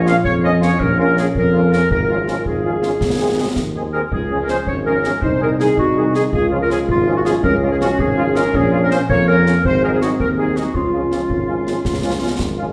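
The clear, up-front woodwind section carries a second line over a mellow, soft-edged trumpet melody in the background in this spirited, festive military-style march for wind band in 6/8 at 109 BPM in Db major, with a vintage-toned euphonium, a warm tuba bass, a distant, roomy French horn section, and close, dry concert snare and bass drums with dark cymbals, all set in a wet recital hall heard from further back over this 12.7-second cut from a longer piece.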